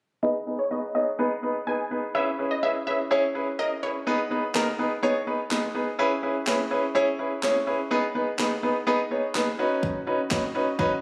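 Captured on a phone in the room with club reverb, compression and a moderate hall ambience, this summery, upbeat dance-pop excerpt at 125 BPM opens with a warm, polished grand piano pumping under a low-pass filter over G#m and C#m7 chords, while a bright, detuned sawtooth unison pluck, also pumping and filtered, carries the melody through delay during a filter sweep until 3.9 seconds, before an up-front electronic house drum kit arrives at 4.5 seconds with a punchy kick, cracking snare and handclaps.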